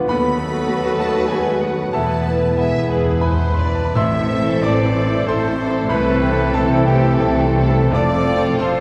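Cut from a longer passionate, brooding romantic movement in a flexible, rubato triple time, it opens with an intimate, up-front baby grand piano carrying the melody, its action noise audible, over a mellow clarinet, a very quiet vintage-toned bassoon, smooth-topped trombone chords, focused bowed cellos and lush bowed double basses. Almost at once, distant violins join to share the tune, along with a hollow silver flute, a background violin line, very quiet violas and dark French horns. Round, soft-malleted timpani sound a fill from 1.9 s, and a clear trumpet adds stabs from 2.9 s, all heard from far back in a reverberant recital hall.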